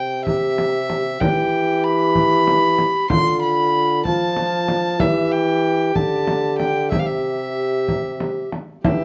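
A light reverb surrounds this solemn, rustic renaissance-style consort dance in 6/8: a reedy, gut-string violin sits up front on the second line and a bright, distant trombone holds the bass from the start, joined at 0.3 seconds by an airy, chiffy tenor recorder carrying the tongued melody and a deep, band-limited frame drum.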